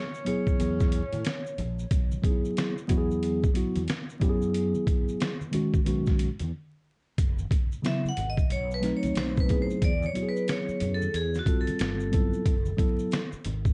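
A dark, crackling vinyl haze with light reverb frames this nocturnal, cool jazz-hop excerpt at 91 BPM in F# dorian with a swung feel, where a gritty, pitched-down sampler-style drum kit and a punchy fretless bass with ensemble chorus play alongside a mellow tine electric piano, bright maracas and congas stay in the background, a breathy tenor saxophone and a ringing hard-mallet vibraphone with tape echo share the first 1.5 seconds, and after a break at 6.5 seconds the vibraphone returns at 7.9 seconds for its solo.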